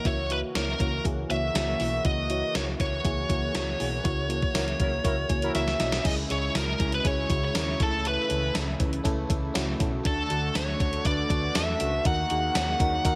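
Dramatic and urgent, this 1980s-style pop excerpt drives along in a straight four, cut from a longer piece. A bluesy overdriven lead guitar carries the melody up front with a distorted, picked tone, while a glassy FM electric piano with a bell-like attack and a warbling chorus shimmer plays accompaniment beneath it. A brassy analog pad holds sustained, airy chords in the background, and a hollow-body short-scale bass plays a dark, round line. A gated digital drum machine sits up front with a thumpy kick, a gated-reverb snare, hi-hat, crash and tambourine. Around 4.6 seconds a fat, detuned analog synth brass adds brief stabs during a band accent, capped by an electric piano fill and a drum fill. At 6.0 seconds a very quiet, compressed overdriven rhythm guitar joins as the harmony moves from F#7 into C#m, A/C#, D and D#m, all set in a light digital ambience.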